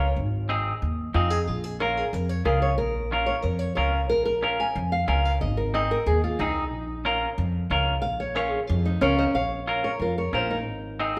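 A fingerpicked, dark nylon-string guitar solos up front from the first moment through 9.3 seconds over a bright, clean, picked semi-hollow electric guitar and a woody, thumpy pizzicato upright bass, driving a fiery, danceable cumbia in Bb minor at 183 BPM that shifts between Ab and Bbm as the band plays live together in one room, bathed in the wet reverb of a large studio, before this section of a longer piece gives way to a new passage at 9.3 seconds.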